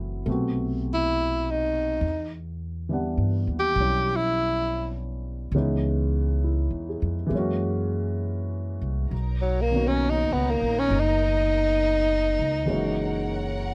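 A breathy tenor saxophone with vibrato carries the melody up front in this tender, intimate swung jazz ballad fragment, over a slightly detuned upright piano with audible action noise and a woody, thumpy pizzicato upright bass, while a lush bowed string section adds smooth sustained chords from 9.1 seconds, all captured close and dry.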